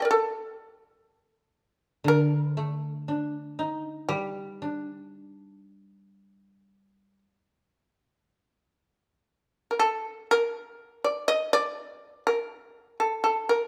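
A bright, buzzing, plectrum-plucked shamisen carries the melody up front through this still, austere Japanese traditional piece, cut from a longer work, in G hirajoshi at a rubato 60 BPM, while a mellow, woody koto played with fingerpicks accompanies it from 2.0 to 7.2 seconds before the music moves into a new section at 8.3 seconds, all set in a moderate recital-hall reverb.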